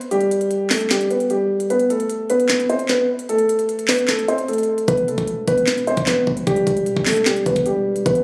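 Dark and hard-hitting, this short trap cut at 151 BPM in a half-time feel sits in E minor, with a mellow, boxy concert grand carrying the melody over Gadd9 and Am chords while an overdriven electronic kit of knocking kick, sharp snare, crisp hats and handclaps sits up front, and a heavy sine-based 808 bass with a noise layer punches in at 4.9 seconds on the Em, all heard through a phone-in-the-room recording with club reverb and compression.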